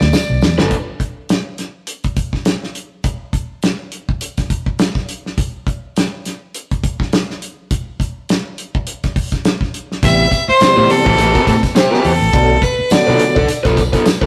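Funk with a driving, funky feel and a swung sixteenth-note groove, cut from a longer piece. It opens with a short break and drum fill over Bm7, where fiddle, bass, tambourine and guitar sound briefly before the damped 70s drum kit carries on alone until 10.0 seconds, dry and up front with a fat snare and tight kick. The band then returns over Am9 and Bm7: a clear, bowed fiddle with light vibrato and an intense, smooth top takes the melody, the foam-muted fingered electric bass sounds dark and round, and a very quiet, jingly tambourine sits in the background. A picked, overdriven semi-hollow guitar adds up-front hollow-body accompaniment from 10.8 seconds, while a percussive tonewheel organ plays lightly overdriven stabs with key click, chorus vibrato and a slow rotary speaker. The whole take has a rough rehearsal-room character, with a moderate stone room reverb, warm saturation and lossy compression artefacts.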